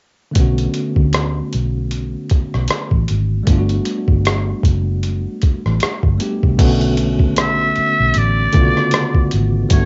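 R&B and neo-soul with a soulful, smooth swing, this short cut from a longer piece sets a bell-like tine electric piano with cassette tape and plate reverb over a dark, round, foam-muted fingered bass and a gritty, compressed boom bap sampler-style kit with a thumpy kick, moving from Bm9 to Gmaj7 and back before a buzzy, raspy trumpet with a metal mute enters at 7.4 seconds with vibrato and scooped notes, all carrying the lo-fi haze of a home cassette recording.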